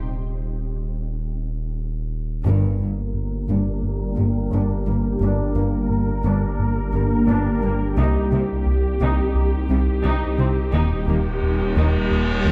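Vast and relentless, this cinematic excerpt from a longer hybrid orchestral and electronic film score moves at 87 BPM in a straight 4/4 in G minor. It opens with a deep, thick saturated sub bass up front, holding the low end through a break; a rich, very quiet double bass section slips in at 2.4 seconds, just before the band lands with an accent at 2.5 seconds. From there a round, dark analog bass riff with ring modulation and a moving notch sits in the background, joined by more bowed strings: a smooth symphonic cello section in the background, and a clear, focused viola section that sounds distant and lush with vibrato. An ethereal, airy pad enters at 3.0 seconds with slow-attack sustained chords, its detuned, full-bodied tone shaded by ensemble chorus, phaser and built-in reverb. A filter sweep runs through this passage as the harmony moves from Gm to Cm to Eb, and an electronic reverse cymbal enters at 11.2 seconds. 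A moderate concert hall reverb gives the whole arrangement a spacious setting.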